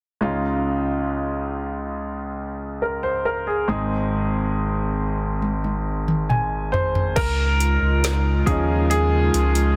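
At a straight 69 BPM in 4/4, this heartfelt, hopeful pop ballad opens on a clear, open concert grand piano with a deep low end, moving from Dbadd9 to Ab, before a smooth, electronic R&B drum kit with a soft kick, woody snare and metallic hats enters at 5.4 seconds with a fill, the piano adding a fill of its own from 5.9 seconds. At 7.2 seconds a full sine sub bass doubled at the octave arrives as the piano takes a solo, soon joined by an airy, breathy, warbling pad with chorus, under light reverb and a dense, heavily limited modern master.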